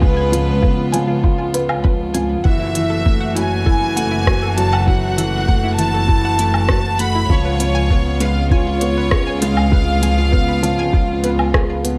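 A muffled, thumpy electronic kick sits up front in this intimate, hypnotic piano-and-strings electronica piece at 99 BPM in F# minor, joined from 0.3 s by a crisp-hatted electronic kit with rim click and woodblock. A felt-muted upright piano with audible action noise plays a dark, mellow riff with digital delay over a bowed double bass section carrying tube saturation and sidechain pumping, while a veiled, con sordino string quartet holds sustained chords. A clear, earthy violin section sings the melody with delay until 11.5 s, and a round, nasal analog pluck with chorus and phaser sits in the background playing arpeggios over C#7 and F#m7 in light reverb, in this section cut from a longer piece.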